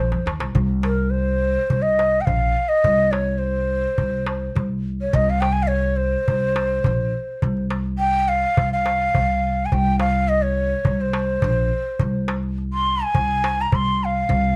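A breathy, reedy ney carries a soulful, hypnotic melody in this Arabic maqam kurd ensemble excerpt, set over a woody, dark pizzicato upright bass and a crisp, close darbuka played with soft hands, while a bright-edged qanun sounds barely audibly in the opening half second under a drum fill, all in light reverb.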